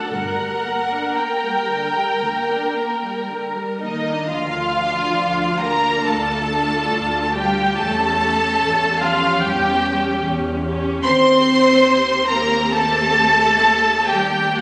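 Captured on a phone in the room, this slow, rubato passage for string orchestra is bathed in a wet scoring-stage reverb, taken from a longer piece in 4/4 at 56-76 BPM. Two violin sections sit up front with a rich, yearning tone: the upper one carries the melody smoothly and evenly, and the lower one shapes an expressive second line. Beneath them the violas add a close, soft-attacked accompaniment with portamento, the cellos lend a warm, expressive bass, and the distant double basses add a lush bowed foundation, every section played with vibrato, while the melancholic harmony moves from G minor to D minor at 4.3 s, passing through A7/E and Cm/Eb before the passage ends at 14.6 s.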